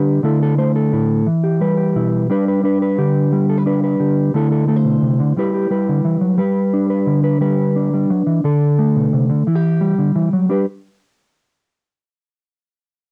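A lone electric guitar, dark and clean with a fingered touch, carries this danceable highlife fragment in a straight 12/8, sitting up front with the mellow glow of cassette tape. Its chords move among Dsus2, Em and G before a bare D5 and a return to Em, and the guitar falls silent at 10.7 seconds as the passage settles on G. Light reverb and the soft, homespun sound of a cassette recording give this short cut from a longer piece an intimate, warm feel.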